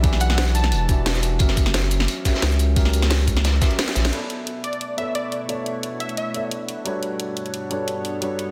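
Dense and heavily limited, with a light studio reverb, this short excerpt from a longer liquid drum and bass track rolls along at 176 BPM in B minor with a lush, straight 4/4 feel. It opens on a drop: a deep, thick, saturated sub bass sits up front under a knocking, layered electronic kick, while a produced kit adds hi-hat, shaker and a cracking snare, and a gritty, rolled-off acoustic breakbeat kit with a medium-tuned snare sits in the background. Throughout, a dark, intimate grand piano with audible action noise and long sustain plays accompaniment through tape echo, moving from Em9 to F#7b9 before settling on Bm11 and Gmaj9#11. A punchy, catchy unison lead of detuned sawtooth and sine with a noise layer and a filter sweep takes brief melodic turns, coloured by 12-bit sampler grit and tape echo. The kick falls away at 3.7 seconds, and after a drum fill at 3.9 seconds and a band accent, the sub bass and breakbeat drop out at 4.1 seconds. 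From 4.6 seconds a glassy, ethereal FM pad with slow attack, ensemble chorus and sidechain pumping spreads sustained chords alongside the lead and piano.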